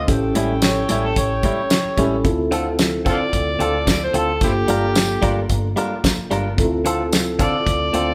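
Captured as a band playing live in one room with a moderate large-studio reverb, this smoky, soulful excerpt of straight-eighth soul blues in D minor moves at 111 BPM over A7, Dm7, Gm7 and Dm7. A dry, up-front 70s drum kit with fat snare, tight kick, hi-hat and tambourine plays alongside a dark, round, foam-muted electric bass, while a mellow tine electric piano plays accompaniment and a bright, twangy, directly recorded clean guitar adds compressed picked stabs through spring reverb from 0.4 seconds. A horn section holds sustained ensemble chords until 2.2 seconds, when the gritty, overdriven harmonica, already carrying the melody, moves into a prominent jazz-style solo with light vibrato, tongue slaps and a soft attack.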